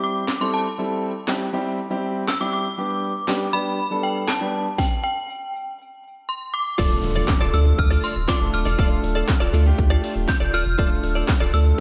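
A dreamy, reverb-soaked mix with a moderate plate reverb gives this upbeat, euphoric dance-pop clip a hazy glow at 120 BPM in straight 4/4. Up front, an FM synth chime carries the melody with inharmonic, ringing tones that decay into a long release, thickened by ensemble chorus and tape echo, while an open-sounding grand piano with long sustain pumps against the sidechain beneath it over C and G chords. The house drum kit is punchy and overdriven, with a cracking snare, handclaps, hi-hat, shaker and crash cymbal, re-recorded in a large room and sitting forward in the mix. A stop at 4.8 seconds suspends the harmony until a very quiet electronic impact marks the move to D minor at 6.8 seconds. There a deep, round sine sub bass with a warm, mellow sustain joins the sidechain pumping, and a clean, picked electric guitar, recorded direct and compressed with ensemble chorus, adds a riff.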